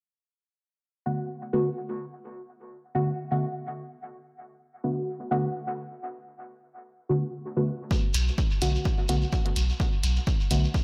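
A deep, nasal chord stab on Bm7, shaped by chorus, phaser, sidechain pumping and dub echo, carries this cavernous, nocturnal dub techno excerpt at 127 BPM in B minor from 1.1 seconds; it is joined at 7.9 seconds by a punchy analog kick and a grainy, distant shekere with its own dub echo, then at 8.1 seconds by a round, up-front sub bass pumping on B1 and a layered electronic hi-hat, within a moderate plate reverb and an echo-heavy mix.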